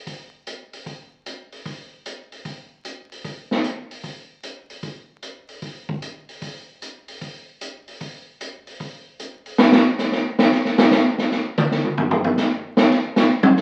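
Sultry and brassy in mood, this short jazz excerpt from a longer piece swings in 4/4. A big-band drum kit carries the whole passage from 0.1 s to 13.6 s, working across hi-hat, kick, snare and toms. The kit sounds roomy and acoustic, with a boomy kick, a medium-tuned snare and a rolled-off top that gives it a mellow, vintage edge. From 9.6 s the drums take over as a solo, closing out the clip on their own. A large studio reverb wraps the playing, and the sound carries the crackle of a very old 78 rpm record.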